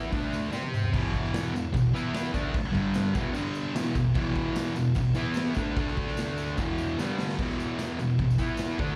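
This 9-second cut from a longer piece sounds like a live club gig heard through the venue's PA, with a moderate club reverb giving the room a short, lively tail. It's swaggering, gritty garage rock in E minor at 149 BPM, in a straight 4/4. Up front, a thick, double-tracked fuzz guitar drives a picked, distorted riff that spans E2 to C5 and moves through chords such as E5, G5 and D5. Behind it, a raw acoustic drum kit with a punchy kick, a medium-tuned snare, hi-hat, crash and toms sounds saturated in a pumping stone room, and it plays a fill at 0.5 seconds and another at 7.0 seconds. A jingly tambourine sits in the background. The music moves into a new section at 7.4 seconds, landing on E5 before the cut ends.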